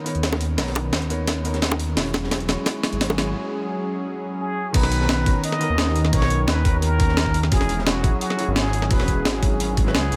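Set in a small room with light reverb, this dreamy, melancholic liquid drum and bass excerpt moves at 173 BPM in a straight 4/4, cut from a longer piece and alternating between Bmaj9 and E69 chords. The opening build-up puts a filter sweep on both a soft, felt-muted upright piano, whose thin felt and audible action noise sit intimately in the background through tape echo, and a smooth, slowly blooming analog pad that pumps under chorus. A drum fill runs from the start until the break. A gritty, pitched-up sampler-style breakbeat kit sits up front with a medium-tuned snare and crash, while a darker, saturated acoustic breakbeat kit with a high-tuned snare and rolled-off top stays behind it. Tight, hard-handed bongos play close and dry early on, and a layered, knocking electronic kick joins a deep, rumbling detuned saw bass, whose unison voices beat against each other. After a break at 3.4 seconds, a plunger-muted trumpet enters at 4.4 seconds with a jazz-style solo of wah-wah tones, vibrato and scooped notes through dub echo, carrying into the drop at 4.7 seconds.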